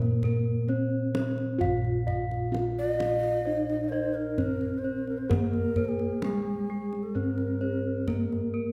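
Ceremonial and shimmering, this Javanese gamelan passage in Bb slendro moves at a stately 65 BPM, as a mellow bronze metallophone carries the melody with padded mallets and paired tuning that sets its tones beating, a second metallophone rings out arpeggios under a wooden mallet, and two sets of bossed gongs trace arpeggios and a bass line, one set round and band-limited with a vintage tint and the other boxy and set back, while the deep kendang drums and a breathy bass bansuri with crisp attack and expressive vibrato enters at 2.8 s with a second line, all bathed in a wet recital-hall reverb.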